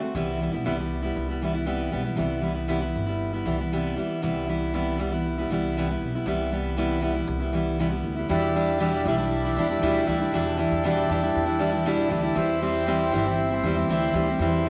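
A full-bodied, up-front fingerpicked steel-string guitar with audible finger squeaks carries this reflective, wistful acoustic pop excerpt over a woody, thumpy pizzicato upright bass, until a reedy, breathing harmonium joins with sustained chords at 8.3 seconds as the harmony moves from Cmaj7 to Em7, all set in a moderate plate reverb.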